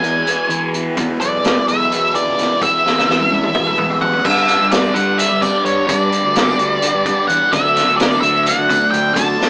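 A hazy, kaleidoscopic slice of psychedelic rock in a lopsided 7/8, cut from a longer piece and captured as a rough rehearsal-room recording with a small-speaker sound and moderate small-room ambience. An up-front, dark octave-fuzz lead guitar carries the melody over a bright, double-tracked fuzz guitar riff colored by phaser, while an overdriven combo organ with light vibrato holds mellow sustained chords in the background. A round, fuzzed fingered bass anchors the low end, and a punchy, gritty vintage drum kit with dark cymbals and a rolled-off top sits forward in the mix, rolling through a drum fill from 2.8 seconds. At 4.3 seconds the harmony moves from E to G, and a jingly, distant tambourine joins very quietly. The chords then shift to D at 7.5 seconds.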